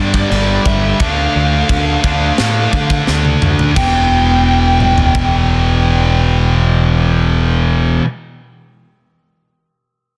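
A punchy, fuzz-laden picked electric bass sits up front in this epic, dark heavy metal excerpt, played at 87 BPM in a straight 4/4 and rooted in E phrygian. Two high-gain rhythm guitars carry the riff beneath it: one bright and distorted, the other with a scooped tone, both picked. Above them, a bluesy, dark overdriven lead guitar carries the melody in a high register, coloured by tape echo, until it drops out at 7.3 seconds. The acoustic drum kit has a tight kick, a high-tuned snare, crash and china cymbals, toms, and a big, pumping room sound; it plays a fill from 3.1 to 3.8 seconds, and the drums stop at 5.3 seconds. The harmony moves from G5 to Dm and then to Em at 3.8 seconds, where a new section begins. The whole piece sits in a small room ambience with a dense, heavily limited modern master.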